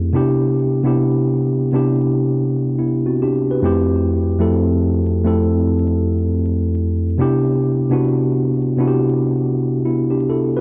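A worn, slightly out-of-tune tine electric piano plays alone and up front through cassette tape coloring and a low-pass filter, moving from Cmaj9 to Fmaj9 at 3.6 seconds and back to Cmaj9 at 7.2 seconds in this dreamy, cosy hip hop excerpt at 68 BPM with a swung 16th-note feel, set in light reverb over vinyl crackle.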